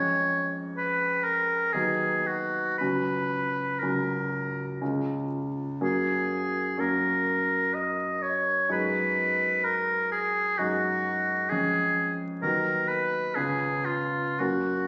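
Romantic classical in a tender, warm mood, this rubato 3/4 excerpt features a clear oboe singing the melody up front over a bright concert grand piano whose accompaniment reaches into deep bass, all heard through a moderate recital hall reverb and a phone-in-the-room recording with vinyl crackle, compression and a dulled top end.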